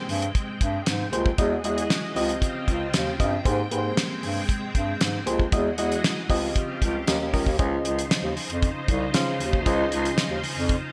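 Early-eighties boogie funk at 116 BPM in a smooth, feel-good groove, cut from a longer piece: a damped 70s drum kit with a fat snare, tight kick and hi-hat sits up front under gated reverb, a mellow bass clarinet with a soft attack carries the low line, a warbling FM electric piano comps through maj9 chords, and a lush sawtooth string machine with ensemble chorus holds slow-attack sustained pads, all in a bright 1980s-style digital production that shifts into a new section at 7.6 seconds.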